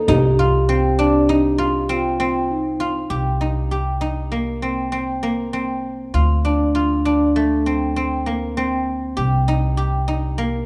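A silvery guzheng, played with fingerpicks and set up front, rings out arpeggios in this urgent, hypnotic excerpt of contemporary chamber music in an uneven 5/4, over woody, growly pizzicato upright bass, while a mellow soft-mallet vibraphone with its motor off carries a second line and a small, bright frame drum sounds very quietly from a distance until both drop out by 3.1 seconds, the dark production framed by moderate recital hall reverb.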